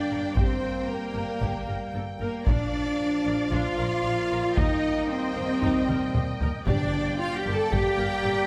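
At 114 BPM in a straight 4/4, a close, dry taiko ensemble struck with heavy sticks drives this dark, dramatic cinematic film-score passage in G minor, cut from a longer piece, with a drum fill at 5.9 seconds and background timpani joining on G2 at 6.7 seconds as the chords move from Gm through Bb and Eb6 to Gmadd9. Lush, bowed violin sections carry the melody and a second line over a background viola accompaniment, while cellos and double basses anchor the bass with smooth, even vibrato. Mellow French horns and clear, vintage-toned trombones hold sustained chords, all set in a wet scoring-stage reverb.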